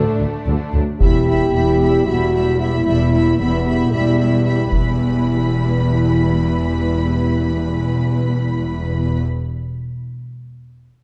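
Epic orchestral film score in a relentless, dark 7/8, cut from a longer piece, where a very quiet, mellow trombone chord and a distant, roomy tuba drop out by 0.9 s, leaving shadowy French horn chords, woody, up-front double basses, smooth cellos and soft-attack violas beneath a lush, vibrato-rich violin line, while a taiko ensemble played with heavy sticks drives from 1.0 to 5.7 s, the whole mix sitting in a moderate scoring-stage reverb.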